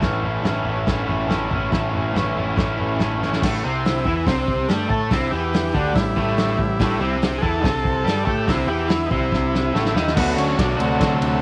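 A bright, double-tracked overdriven guitar riff sits up front in this rowdy, swaggering garage rock excerpt at 142 BPM, driven by a growling, tube-saturated picked bass and a muffled, lo-fi vintage drum kit with a tight kick and fills around 3.2 s and 9.3 s, while a buzzy combo organ with heavy vibrato enters at 3.9 s to carry the melody in a small, lightly reverberant room.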